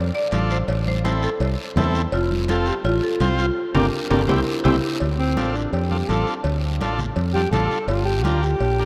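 A woody, hard-mallet marimba with slapback echo carries the opening solo of this driving, danceable cumbia in D minor at 167 BPM, until a drum fill and band accent at 3.6 s hand off to a breathy, whispered alto saxophone that takes over the melody at 5.2 s. Underneath, a round, punchy fingered electric bass sits up front while a buzzy, overdriven combo organ with heavy vibrato fills in the chords. Ringing congas, metal-shell cowbell and timbales in the background and a raspy, close guiro keep the groove moving, all set in a vast, echoing cathedral space.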